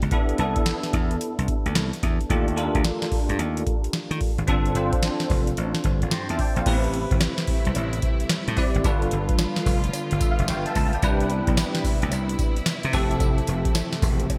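A bright 1980s-style digital production with light reverb frames this bouncy, flirty slice of new jack swing R&B in C major, moving at 110 BPM in 4/4 with a 65% swing on the sixteenths. Up front, a booming analog drum machine drives the groove with a deep kick, a crisp snare, metallic hi-hats, tambourine and crash cymbal, all soaked in gated reverb and carrying a tape-warm character. A punchy, direct slap bass sits alongside it, while a bell-like, clean tine electric piano, glazed with ensemble chorus, spells out lush chords such as Cmaj9, Ebmaj9#11 and G9sus4. At 6.7 seconds the arrangement opens into a second section where a warm, lush studio string section enters with soft, bowed, vibrato-rich sustained chords and a very quiet cowbell sits in the background, as the harmony moves through Am7, G7, Cmaj7 and Fmaj7. The electric piano slips in a short fill at 9.9 seconds, and the passage is cut from a longer piece.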